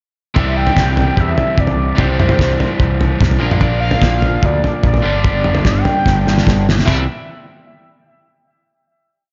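A screaming, guitar-like synth lead carries the hook phrases of this short, upbeat indie rock piece, its sawtooth and square-wave tone thickened by a sub octave, ring modulation and vibrato, with a phaser and analog delay adding motion. Beneath it, a bright, compressed overdriven electric guitar rings out chords up front, while a growling picked bass adds overdriven weight from below. The cloth-damped drum kit sounds thuddy and lo-fi, with a fat snare, tight kick, muffled dark cymbals and toms driving the groove. The guitar enters first at about 0.3 seconds, with the other parts joining at about 0.4 seconds for a jangly interlude, and a drum fill at 6.1 seconds leads into a final chord at 6.9 seconds. The mix is dreamy and soaked in a lush hall reverb, its top end rolled away for a hazy glow.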